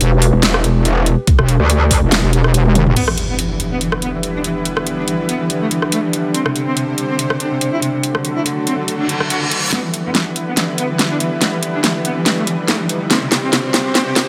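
An aggressive, menacing heavy wobble dubstep passage in E minor, cut from a longer piece, opens on a drop at 142 BPM in a half-time feel with a light swing, where a heavy, detuned wobble bass on a low E and a snarling, metallic FM wobble bass with distortion stack up front over a dubstep kit with a huge snare, metallic hats, rim clicks and toms. A knocking, tape-tinged electronic kick joins briefly inside that opening, while a warbly, lo-fi pad hums darkly in the background with sidechain pumping. Both basses fall away before the 3.0-second mark, where a drum fill gives way to an impact and the music shifts to a rich, biting bowed cello melody, filtered and trailed by dub echo. Beneath the cello, a lush supersaw pad holds slow-blooming chords that pump against the beat, moving through Em7, Csus2 and D. A reverse cymbal leads into the final section at 9.7 seconds, a build-up carried by a long drum fill and riser effects, all set in a light digital ambience.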